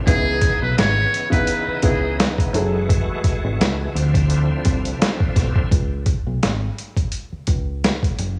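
A bright tonewheel organ opens this dark, moody boom-bap hip-hop excerpt at 85 BPM in C# minor, holding full, shouting chords with key click, chorus vibrato and a slow rotary speaker. A buzzy, thin muted trumpet with light vibrato and tape echo plays a brief jazz-style solo line until 2.2 seconds, over a worn, woody, slightly detuned upright piano. Beneath them, a gritty, compressed sampler-style kit with a thumpy kick and a swung 16th feel sits up front beside a round, punchy dub bass, as the chords move through C#m9, F#m9 and Dm9, and when the organ stops at 5.7 seconds, bass and drums carry on alone until 8.4 seconds in a lightly reverberant, home cassette sound.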